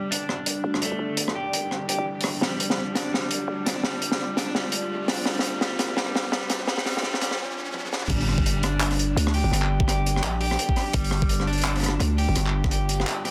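Tense and spacious, this half-time drum and bass excerpt builds for 8.1 seconds under a deep, moody sawtooth pad with chorus and a slow, sustained bloom, while a slightly broken-up electric guitar picks dark arpeggios through lo-fi sampler grit and digital delay, a very quiet riser hovers beneath, and a growling, buzzy 808-style bass sits up front. A crunchy breakbeat kit with a high-tuned snare, handclaps, rim clicks, toms and dark cymbals rolls through fills from 2.4 seconds, pausing for a short break before the drop. At 8.1 seconds an overdriven, knocking electronic kick joins the mix, all within a small-room space and a dense, heavily limited master.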